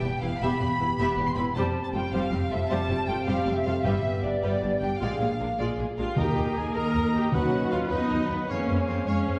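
Triumphant and heroic, this cinematic orchestral passage in 12/8 sets a lush violin melody, kept in the background, against a second violin line, a pure flute group, portamento-laden violas, distant mellow French horns holding chords, and a bass of cellos and focused double basses. Timpani played with medium mallets join at 3.8 s, and at 6.2 s a clear, present oboe, a smooth clarinet and a roomy trumpet with light vibrato add lines and stabs. A wet scoring-stage reverb places the orchestra further back in the hall, and the passage is cut from a longer piece.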